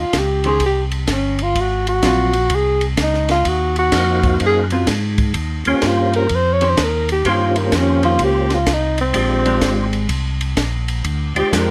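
A lightly reverberant, greasy soul jazz organ trio excerpt swings at 126 BPM in Eb mixolydian, led by an intimate, breathy tenor saxophone solo with scooped notes and a subtone, over lightly overdriven tonewheel organ bass with a slow rotary speaker and key click, a dry compact cocktail drum kit with dark cymbals and a punchy kick, and clean, picked hollow-body jazz guitar comping, while a round, percussive tonewheel organ with chorus vibrato joins the melody at 3.9 seconds.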